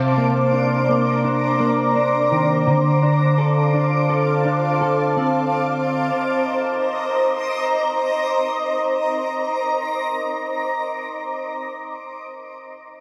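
Dream pop with a melancholic, haunting air, cut from a longer piece and bathed in a lush hall reverb. A clean, dark electric guitar plays fingered arpeggios up front, thickened by chorus and delay, until it drops out at 6.1 s. Meanwhile, a blurred, detuned granular cloud pad holds slow-attack chords in its own reverb through to 11.2 s, moving from Cm9 to Dm7 and back to Cm9.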